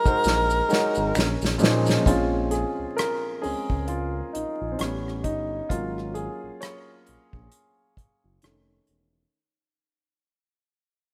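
R&B and neo-soul in an introspective, smooth mood, this rough home-demo fragment with vinyl crackle and small-room ambience opens with a breathy, scooped tenor saxophone note over a woody upright piano, an airy acoustic drum kit with punchy kick and bundle sticks, close maracas and finger snaps, and a mellow, ring-modulated synth bass, before a drum fill gives way to an upright piano solo at 2.1 seconds as the music fades out.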